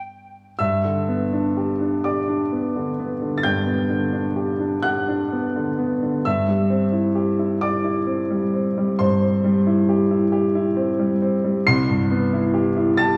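A clear, intimate baby grand piano sits up front with its action noise audible, playing a serene classical accompaniment in G major over a slow, rubato 12/8 pulse of about 35-47 BPM that moves from G to C/G at 6.2 seconds and Cmaj7 at 11.6 seconds, spanning C2 to C7 in a small room ambience bathed in wet concert hall reverb across this 13.2-second cut from a longer piece.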